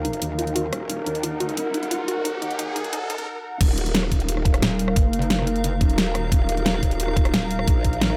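A knocking, tape-warm electronic kick drives the drop at 3.6 seconds in this dark, futuristic technical drum and bass piece at 177 BPM in Eb minor, where an aggressive, formant-filtered growl bass, a dubstep kit with a huge snare and bright hats, a deep, wave-folded analog pad holding an Ebmadd9 chord and a cloudy granular pad in the background run from the start, while a lo-fi warbly dusty pluck plays delayed arpeggios under a filter sweep and an electronic riser through the build-up before a brief break, and a heavy, detuned pulsing pluck wobble bass joins at 4.6 seconds.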